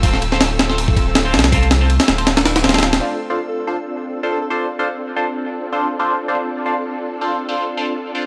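An excerpt of frenetic, atmospheric drum and bass in a jungle vein opens on a drop, with a compressed, pitched-up breakbeat kit up front, its thumpy kick, medium-tuned snare and ride cymbal carrying a tape-warm grit and studio reverb at 161 BPM with a slight 16th-note swing in D minor. Beneath it, a deep, round dub sub bass holds the low end, while a glassy sine texture of drifting overtones sits calmly in the background with chorus and its own reverb. Over a Dm7 chord, a silky, warbling string machine sustains soft chords through the whole passage, and a nasal, band-passed sawtooth stab cuts through brightly with a moving notch, phaser and dub echo. The drums, bass and glass texture stop at 3.0 s, leaving the strings and stabs to carry the second section. At 3.5 s a dark alto saxophone in the background plays a brief jazz-style A4 with light vibrato and scooped notes, roughened by 12-bit sampler crunch and dub echo. 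The whole has a dry, gritty hardware character with a cassette-tape tinge and light reverb.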